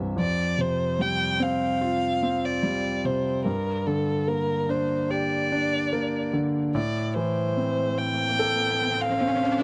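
Hopeful and tender, this brief pop ballad excerpt moves at an unhurried 73 BPM in 4/4 with a straight feel, set in F major. A concert grand piano carries the accompaniment from the start, its tone intimate and polished with deep bass, long sustain and audible action noise, sitting up front from C2 to A4. A single bowed violin takes the melody from 0.2 seconds, dark and woody with a soft attack and vibrato, ranging from A4 to G5 close to the listener. The harmony passes from Fsus2 to Gm and then Am, and at 7.8 seconds an electronic riser enters in the background. The sound is that of a dry, close 1970s-style studio recording with light reverb, and the passage is cut from a longer piece.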